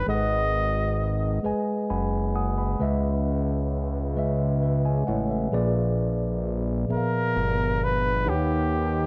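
A slow R&B fragment in six-eight, cut from a longer piece, with a late-night, yearning mood. A mellow tine electric piano carries the chords throughout over a fat, detuned sawtooth analog bass, while a warm flugelhorn with vibrato and tape echo sings the melody at the start and returns from 6.9 seconds. Between its phrases the electric piano slips in a fill from 1.4 seconds, and the harmony moves through minor sevenths to altered dominant chords in a small, lightly reverberant room.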